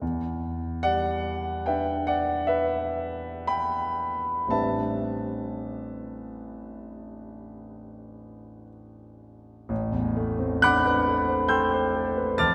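A concert grand piano, up front with a deep bass, an open tone and long sustain, carries this short impressionist classical solo across a range from A1 to A6. The mood is nocturnal and hazy, in A dorian and 5/4 at a rubato 56-75 BPM, with the harmony shifting from Em7 to Am11 at 4.5 seconds and a new section beginning at 9.7 seconds. A wet concert hall reverb surrounds the instrument in this passage cut from a longer piece.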